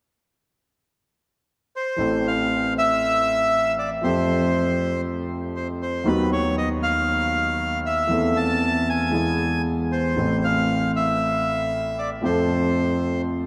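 Passionate and dramatic, this short tango excerpt in A minor moves at 118 BPM in 4/4 with a rubato feel, the reedy, boxy bandoneon carrying the melody up front from 1.8 seconds. A concert grand piano with a deep, open bass joins at 2.0 seconds as accompaniment, moving through chords such as Am, Fadd9, B/D# and E before settling on F. A wet cathedral reverb places both in a vast, echoing space, with a long tail that lingers behind every phrase.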